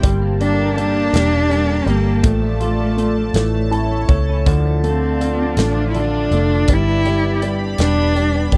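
A woody, bowed cello carries the melancholic, aching melody with vibrato and tape echo, entering at 0.4 s in this slow six-eight pop ballad in D minor at 54 BPM (dotted quarters). Beneath it, a present grand piano with short sustain plays the accompaniment and adds a fill from 3.3 to 4.5 s. A round, foam-muted vintage bass and a polished studio kit with a punchy kick sit up front, while a twangy, compressed clean electric guitar picks arpeggios through ensemble chorus in the background and a full-bodied sawtooth-and-sine pad with a slow attack sustains chords through chorus, all in a dry, close 1970s-style recording that moves from Gmadd9 through Dm/A and A to Dm and G.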